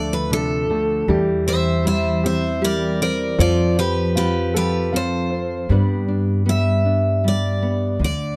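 A peaceful, hopeful acoustic folk piece in 3/4 at 78 BPM in G mixolydian opens with a bright, full-bodied picked steel-string guitar carrying the melody up front, while a fingerpicked nylon-string guitar with audible finger squeak, clear upright piano arpeggios and a dark, woody pizzicato upright bass fill in beneath it over Dm, C/E and F. The piano stops at 5.8 seconds as the harmony moves to G, and the remaining three parts carry on to the end of this short cut from a longer piece. The sound is dry and intimate, with close, detailed microphones catching every string.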